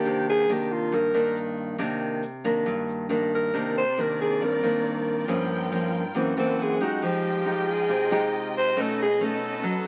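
A raspy, growling alto saxophone leads this melancholic bossa nova fragment, playing a solo melody up front with a jazz vibrato. Beside it, a bright, full-bodied nylon-string guitar is fingerpicked in a deep classical style, its finger squeaks audible as it carries the chords beneath the horn. A grainy, bright tube shaker sits close and dry in the background. At 3.5 seconds, a dark, lush studio string section enters with soft-attack bowed chords, its smooth top and expressive vibrato adding a shadowy cushion under the saxophone. The harmony moves through rich extended chords such as Cm9, Gm7b5 and F#7#11, and the whole passage is heard through a light reverb and the crackle of a very old 78 rpm record.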